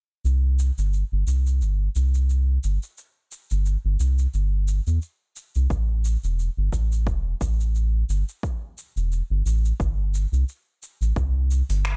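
Sunset chillout with a smooth, relaxed mood, this short excerpt from a longer piece moves at 88 BPM in 4/4 with a light 16th-note swing. A round analog bass sits up front from the start, its deep sawtooth and sine tone carrying a fast attack and long sustain between E1 and E2. A deep house drum kit of finger snaps, hi-hat and shaker runs throughout, its metallic hats roughened by overdrive and given the air of a large room. At 5.7 seconds an electronic kick drum joins, a deep, overdriven thump placed up front that stays until 11.3 seconds. The production is dark with little reverb, keeping the groove close and intimate.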